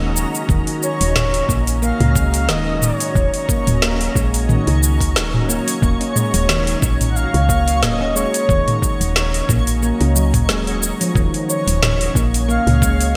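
At the very start, a cloudy, evolving granular pad, ringing handpan arpeggios and a soft, woody FM bass arrive together, setting an earthy, mystical mood in organic downtempo at 90 BPM in Eb minor, with a gentle swing on the sixteenths. The pad holds blurred, full-bodied sustained chords under lush chorus and sidechain pumping, while the handpan's sharp finger strokes carry a touch of vintage 12-bit sampler grit and delay. An electronic afro-pop kit joins at 0.2 seconds with a woody snare, metallic hats, shaker and toms, and a thumpy, overdriven electronic kick follows at 0.5 seconds as the harmony rests on Ebm7. A breathy, flute-like synth lead enters at 0.8 seconds, its soft melody shaded by tremolo, vibrato, chorus and delay. Behind it a faint twinkling granular texture sparkles with an octave-up shimmer, all set in a lush hall reverb with a bright 1980s-style digital sheen, in a passage cut from a longer piece.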